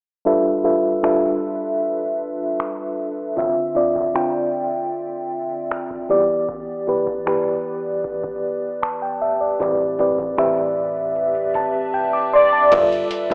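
A lush, dreamy FM electric piano with a soft pad layer opens at 0.3 s, carrying the moody, late-night contemporary R&B harmony through G13, Dm9, Em7 and Am11; it is mellow and up front, shimmering with chorus and tremolo under a long filter sweep, and it closes the passage with a fill. From 1.0 s a booming analog drum machine joins with a straight 4/4 pulse at 77 BPM, with a deep kick, metallic hi-hats, finger snaps and crash cymbal, then drops out from 11.9 s to 12.7 s. At 12.3 s a velvety sawtooth synth lead briefly sings a sustained D5 with vibrato, chorus and tape echo, and at 12.7 s a round, dark fingered bass enters in the background, all framed by a gritty, telephone-filtered hardware sound with light reverb.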